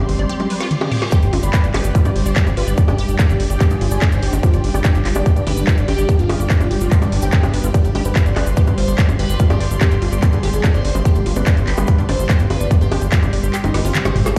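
Psychedelic trance at 145 BPM in G major, this hypnotic, alien passage is cut from a longer piece and rides a tight, up-front electronic kick that enters at 1.1 seconds and drops out at 13.5 seconds. Underneath, a fat analog bass with tube saturation and ring-modulated, detuned waveforms anchors the low end, while a drum and bass kit with a woody snare, metallic hats, bongos, handclaps and toms adds busy detail, marked by a drum fill at the start and another near the close. A swarming, granular drone holds tense, evolving chords with sidechain pumping, joined by a lush unison pluck riff carrying dub echo, a smooth bowed string section with vibrato, and a grainy, close egg shaker, all set back in the mix. From 1.1 seconds a gritty, screaming overdriven synth lead with phaser, vibrato and dub echo carries the melody, and a filter sweep on a synth arpeggio sound runs throughout. A reverse cymbal sounds just before the lead enters, a downlifter lands at the very end, and the whole mix sits in a large studio reverb as if played on a big sound system in a bare room.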